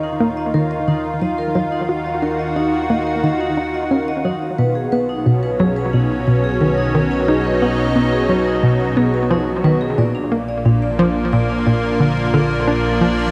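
Bathed in a wet, digital-sounding scoring-stage reverb, this short cut from a longer piece of ambient, sequencer-driven space music drifts at 89 BPM in Eb minor with an expansive, hypnotic mood, moving from Ebm to B6 and on to Bb. A lush, detuned sawtooth pad with chorus holds sustained chords up front, while a hollow, bouncy square-wave pluck repeats its riff through chorus and delay, and a ringing vibraphone played with medium mallets spins delayed arpeggios above. Underneath, a fat analog bass with a filter sweep fades in over the full 13.3 seconds.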